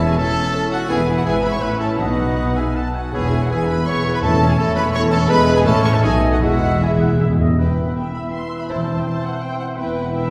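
Round, soft-mallet timpani on calf heads drive this spirited, lively passage from a quick classical-period symphony movement in E major, moving at 164 BPM in 3/4 with a rubato feel and breaking into a fill at 6.4 s. A dark, woody violin section carries the melody, while a rich second violin section, a very quiet airy flute ensemble, a distant oboe and a shadowy clarinet weave second lines around it. Bassoon and focused violas (entering at 0.9 s) supply accompaniment, mellow French horns hold punchy sustained chords, clear trumpet stabs cut through until 7.2 s, and cellos and double basses form a smooth bowed foundation, all set back in a reverberant scoring-stage space.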